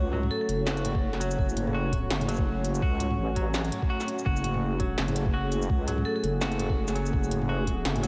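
A half-time drum and bass groove at 167 BPM in 4/4 swings its sixteenths, with a gritty, pitched-down electronic kick thumping in at 0.9 seconds. This kick sits over an industrial kit of clanging snare, crisp hats, shaker and toms. The mood is tense and spacious in F# minor, resting on a single F# minor chord. A deep, saturated wobble bass with chorus sits up front. Alongside it, a moody, evolving analog pad holds sustained chords, pumping against the sidechain. A clean, twangy electric guitar picks arpeggios through tape echo, while a vibraphone struck with hard mallets rings out briefly in the background, once near the start and again at 6.1 seconds. A moderate cathedral reverb soaks the whole mix in a dreamy haze across this short passage cut from a longer piece.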